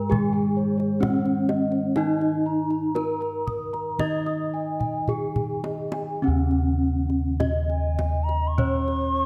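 Ceremonial and serene, this cut from a longer Javanese gamelan piece pairs an up-front, shimmering bronze metallophone melody struck with a wooden mallet against a bright horn-mallet metallophone accompaniment and round, padded bossed gongs in the bass, while a mellow, airy high metallophone plays arpeggios until 6.2 s, a tight, soft-handed kendang adds a drum fill from 4.8 s, and a pure, hollow end-blown xiao with vibrato enters on a second line at 7.7 s, within a moderate concert-hall reverb.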